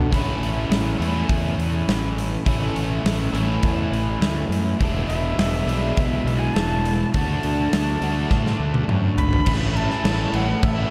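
A dreamy, reverb-soaked mix opens this blissful shoegaze and dream pop excerpt in A major, moving at a straight 103 BPM as a crunchy, double-tracked overdriven guitar riff shimmers with lush chorus over a fuzzed, fingered electric bass and a big, dark, smooth acoustic rock kit with a punchy kick. The chords pass from A through E7sus4 to D, and a drum fill at 8.3 seconds leads back to A at 9.5 seconds. At 5.1 seconds a breathy alto recorder enters high and soft in the mix, its chiffy attack and unsteady vibrato smeared by a diffuse ambient delay.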